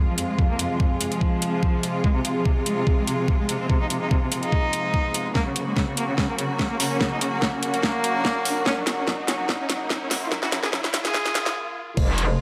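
A biting, nasal solo cello leads this heavy, menacing stretch of wobble dubstep at 145 BPM in a half-time feel, its bowed line carrying a light vibrato and drifting through tape echo as a filter sweep works on it across the whole build-up. Beneath it a bright studio string section holds sustained, intense chords that pump against the beat, while a warbling, lo-fi pad of detuned sawtooth and triangle tones adds a nostalgic haze with chorus, phaser and its own reverb. Up front, a knocking electronic kick and a layered drum kit with a huge snare, metallic hats and crash cymbal drive the groove. A very quiet riser creeps in beneath at 4.3 seconds, and a drum fill follows at 5.4 seconds as the harmony moves from F minor to G flat. The music then stops at 11.6 seconds, and a saturated, metallic wobble bass bursts in at 12.0 seconds for a brief, aggressive hit. The sound sits in a moderate digital room, cut from a longer piece.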